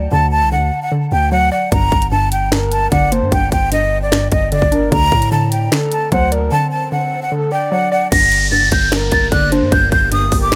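A half-time trap groove at 150 BPM drives this dark, hard-hitting hip hop cut in G harmonic minor, where a breathy jazz flute with digital delay carries the melody up front over a hollow, bouncy square pluck with chorus and a long, mellow sine 808 bass, before the trap kit crashes in at 1.7 seconds with a hard-clipped kick, sharp snare, metallic hats and finger snaps, a soft, vibrato-tinged flute-like synth lead adds a quiet second line, a swell and downlifter enter at 6.0 seconds, and a deep, moody ambient pad with built-in reverb slips into the background at 9.2 seconds as the chords move between D and Gm.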